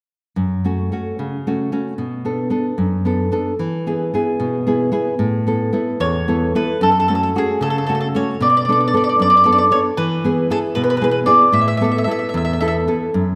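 Bathed in the long, wet reverb of a scoring stage, this fragment of a romantic, wistful Italian serenade moves in a rubato 6/8 at about 75 BPM in F# minor. A full-bodied, fingerpicked classical nylon-string guitar opens alone at 0.4 seconds, cycling through F#m, Bm7, E and Asus2. At 6.0 seconds a woody, double-strung mandolin enters up front with the picked melody and carries it until 12.7 seconds.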